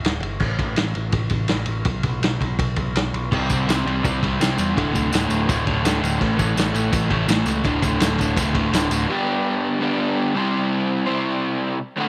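Garage rock at 166 BPM in a raw, rowdy mood, this excerpt opens with a growling, overdriven picked bass and an up-front vintage drum kit with dark cymbals and a punchy kick before a crunchy, double-tracked guitar riff arrives at 3.3 seconds over power chords, joined by a jingly tambourine in the background, with the bass and drums dropping out at 9.0 seconds as the guitar moves to G and C in a small, lightly reverberant room.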